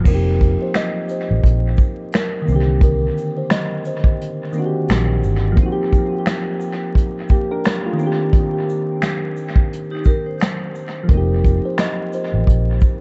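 A swung lo-fi hip hop groove at 87 BPM in 4/4 comes from a dusky brush drum kit with kick, snare, hi-hat, shaker, finger snaps and crash, joined by a round, foam-muted electric bass that drops out at 5.6 seconds and returns near the end. Detuned, chorused electric-piano-like synth keys carry the F7sus4 and Cm9 changes through tape-worn, filtered dub echo, while a buzzing, woody kalimba plays the soft melody and a metallic vibraphone with hard mallets briefly adds a second line from 9.9 seconds. The reflective, melancholic mood sits in a small room with light reverb, vinyl crackle and a dulled top end, cut from a longer piece.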